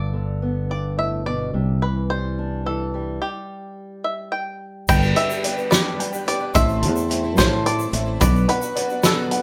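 Recorded by a band playing live in one room with moderate studio reverb, this nostalgic, uplifting indie folk fragment in G major sways in 6/8 at 72 BPM, as a twangy, percussive bluegrass banjo carries the melody up front over a dark, fingerpicked archtop guitar with audible finger squeak and a warm fingered electric bass, pausing on a stop at 3.2 s before the arrangement builds at 4.9 s with a gritty, punchy loose indie drum kit, a shimmering, octave-doubled twelve-string guitar and a grainy egg shaker in the background, a soft, felt-muted upright piano, and a worn, slightly detuned, woody upright piano playing high arpeggios.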